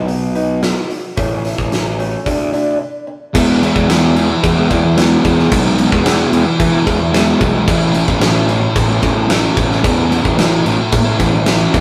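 Restless and cathartic, this quiet-loud alternative rock excerpt in E major moves at 111 BPM in a straight 4/4, opening with a boxy fingerpicked acoustic archtop guitar playing arpeggios through digital delay, finger squeak audible, over a growly overdriven fuzz bass and a big up-front rock kit with a fat snare and punchy kick ringing in a bright stone room. After a break at 2.8 seconds, the archtop stops at 3.3 seconds and a thick, dark, double-tracked fuzz guitar crashes in with a distorted riff, the chords shifting from B, A and Dsus2 to E and then A at 7.7 seconds. The sound is a rough rehearsal-room recording with light reverb.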